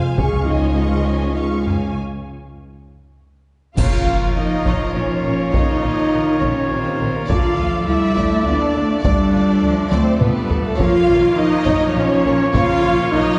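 Cinematic, epic orchestral film score in a dark, heroic triple metre, where lush bowed strings with expressive vibrato, a warm violin melody in the background, woody double basses and close cellos blend with dark French horn chords, clear trombones and heavy-sticked taiko drums, until at 3.8 seconds a band accent of dark clash cymbals and concert bass drum with a huge, bright, very quiet impact brings in a brassy pipe organ trumpet stop with chiff and clear trumpet stabs, all set back in a wet scoring-stage reverb with a taiko fill at 9.9 seconds in this fragment of a longer piece.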